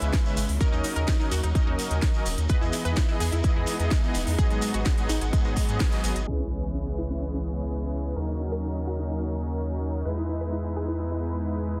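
Progressive house at 127 BPM in C# dorian, this dreamy, bittersweet passage is cut from a longer piece and moves through a C#m7, D#m7, Emaj7 and G#m7 progression. A deep, round analog bass with tube saturation sits up front beside a punchy electronic kick, while a house drum kit adds a cracking snare, crisp hats and crash cymbal, and a grainy, distant shekere rattles beneath. A smooth, detuned supersaw plays stabs through cassette tape coloring, a low-pass filter and dub echo. Behind it, a lush, bowed symphonic string section holds vibrato-tinged chords, and a bright sawtooth unison pluck traces arpeggios with dub echo, all three pumping against the sidechain like the bass. After a band accent at 5.8 seconds, the drums and shekere drop out and an electronic impact arrives at 6.3 seconds as a filter sweep runs over the rest of the passage. The mix is dry, dense and heavily limited, with a modern low-pass sheen.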